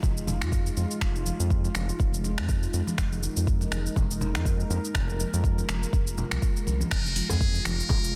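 Dense and heavily limited, this short afro house excerpt sits in a digital ambience with a spiritual, driving mood and a swung sixteenth-note feel. A deep electronic kick drum anchors the groove beside a tape-warm afro-pop kit of crash cymbal, finger snaps, metallic hi-hats and shaker, its snare softly clipped and both sharing a small room reverb, while distant congas sit in the background. Underneath, a round, mellow analog bass and a moody, detuned pad with chorus both breathe with sidechain pumping as the harmony moves from Fm7 to Absus2/F and back. At 6.9 seconds a brilliant, buzzy trumpet with a metal mute steps up front for a short solo with vibrato, close-miked and forceful. A tight, cracking djembe joins in the background at 7.3 seconds, just before the excerpt cuts off.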